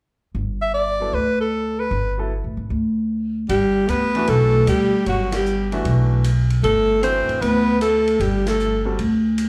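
Heard live through a club PA with light venue reverb, this hypnotic, open modal jazz passage swings in 4/4 as a woody, thumpy pizzicato upright bass anchors the low end and a clear, up-front alto saxophone with scooped notes carries the melody over natural, deep-bassed grand piano accompaniment, the saxophones and piano bathed in plate reverb and slapback echo, before a breathy, raspy, growling second alto saxophone and a dark, smooth jazz drum kit join at 3.5 seconds, with band accents landing at 5.3 and 8.4 seconds.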